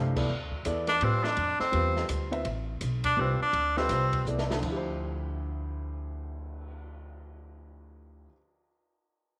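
A lilting swing in three drives this short modal jazz excerpt, cut from a longer piece, with an intense, spiritual mood. A plucked upright bass sits up front with a woody tone, while a natural-sounding baby grand piano supports it on a Dm11 chord. A bright tenor saxophone takes a solo up front in a narrow range, singing with vibrato and scooped notes from 0.9 s until 4.3 s. An open acoustic drum kit with a small-room sound, dark cymbals, a punchy kick and a rolled-off top moves across ride, hi-hat, snare, crash and cymbal swell. A drum fill near 4.3 s leads into a new section. A wet spring reverb lends the recording a lingering tail.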